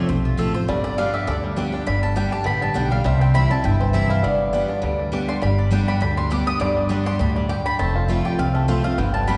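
Driving and rustic, this bluegrass excerpt runs at 203 BPM in 4/4 with a light swing, set in G mixolydian and moving through F, G and C chords inside a cavernous church reverb that gives it a hall-like, softened top end. A picked, full-bodied dreadnought acoustic guitar sits up front alongside a woody, thumpy gut-string upright bass entering at 0.1 seconds, while the double-strung mandolin takes a solo of warm, woody stabs across the whole passage. A twangy, percussive banjo carries the melody from 0.7 seconds, and a very quiet lap resonator guitar adds a metallic, nasal slide second line.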